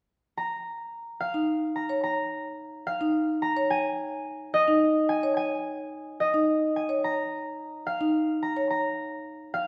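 A ringing, fingerpicked concert harp carries the melody up front from 0.4 seconds, opening this urgent, hypnotic piece of minimalist pattern music in triple time. At 1.3 seconds a marimba played with medium mallets joins close by with warm arpeggios beneath the harp's high line. A wet recital hall reverb surrounds both parts in this short fragment cut from a longer work, which ends at 9.7 seconds.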